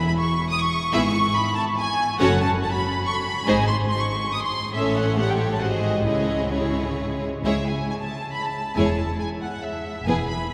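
Bathed in a wet cathedral reverb, this spirited, graceful fragment of a quick classical-period movement for string orchestra in 3/4 with a rubato feel opens on a dark, woody violin section carrying the melody up front with vibrato, before at 0.9 seconds a second violin section adds an expressive line with portamento, the violas supply rich, focused accompaniment, and a lush cello section in the background joins smooth, even double basses on the bass line.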